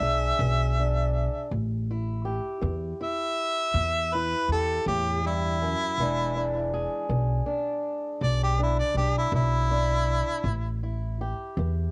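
A slow, straight 12/8 pulse at 54 beats per minute, counted in dotted quarters, carries this brief section cut from a longer acoustic country blues in E mixolydian, with a soulful, gritty mood. Up front, a clear harmonica sings the melody in a jazz-inflected solo, with vibrato, scooped notes and a smooth top end, its tone tinged by cassette tape, before it drops out at 10.8 s. Beneath it, a fingerpicked old ladder-braced acoustic guitar gives a dark, boxy accompaniment, with finger squeak audible in the playing. A pizzicato upright bass with steel strings sits prominently in the mix, woody and thumpy, holding down the low end. The harmony moves between E7 and A5, and the whole piece has the light reverb and small-room ambience of a home recording on cassette.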